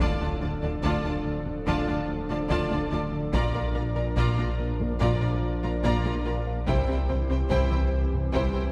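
Heard from far back in a wet scoring-stage hall, this brooding, futuristic snippet of hybrid orchestral and electronic film score sets lush, intense violin sections carrying a melody and a second line over a focused viola accompaniment, with a rich cello section and distant double basses underpinning the bass alongside a thick, saturated sub bass, while mellow French horns and an airy, breathy chorused pad hold sustained chords, twangy resonator-pluck arpeggios sparkle through a filter sweep, a gliding portamento synth bass winds through its riff, and a close, dry taiko ensemble drums beneath it all as the harmony moves from Dm to Bb to C.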